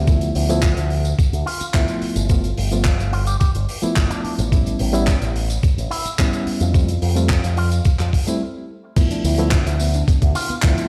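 A cosmic, sensual nu-disco groove at 108 BPM opens on a reedy electric piano with fast tremolo, sidechain pumping and delay under a filter sweep, over a punchy, up-front picked bass with an envelope filter, a thumpy, gritty electronic kick, a dry, damped 70s kit of dark-cymbaled hi-hat, handclaps and crash, and a vintage, band-limited tambourine; a clean, fingered electric guitar with an envelope filter, 12-bit sampler grit and delay carries the melody from 1.5 seconds through Dm69, G13, A9 and F chords, and after a stop at 8.4 seconds the drop at 9.0 seconds brings in a soft, round background pluck with chorus and pumping playing arpeggios over a rootless G13, all heard as if played through a big sound system in a bare stone room.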